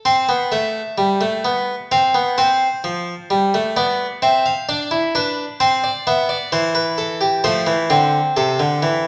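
Classical baroque-style three-part fugue for solo harpsichord, elegant and stately, its plucked, nasal, bright Flemish-style tone sitting up front in a wet recital hall, moving from C through Fsus2 and Bdim to settle on F at 7.4 seconds in this brief cut from a longer piece.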